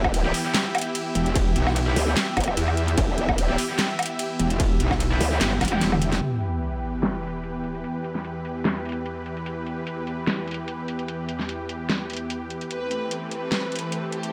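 This menacing, heavy wobble dubstep excerpt opens mid-drop with a growling, formant-filtered bass and a distorted electronic kick up front, over a half-time, slightly swung dubstep kit with a huge snare and metallic hats, a lush supersaw pad and an airy, breathy pad, both pumping under sidechain. A metallic FM wobble bass soon joins, while a bright, picked distorted guitar stabs with tape echo in the background. Once the growl bass, kick and wobble bass have fallen away, a sub drop impact hits at 6.2 seconds, the drums run on under a filter sweep, and at 12.7 seconds a dark, woody violin section with vibrato enters over a shift to Am7/E, all in light digital ambience.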